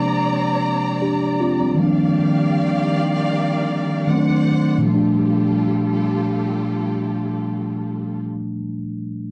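A mellow tine electric piano and a lush bowed string section begin together in this moody, late-night contemporary R&B passage, cut from a longer piece and moving at 78 BPM in a straight 4/4 in G minor. The electric piano carries the accompaniment up front, its tone clean and direct, while the string ensemble holds sustained chords lower in the balance, close and expressive with vibrato and portamento. The harmony moves from Bb9 through Ebmaj9 and D7b9 before settling on Gm9 as a new section arrives at 4.9 seconds. The strings stop at 8.2 seconds, leaving the electric piano alone until 9.3 seconds. A wet reverb and the cassette-tape coloring on both parts give this home recording an intimate, after-hours haze.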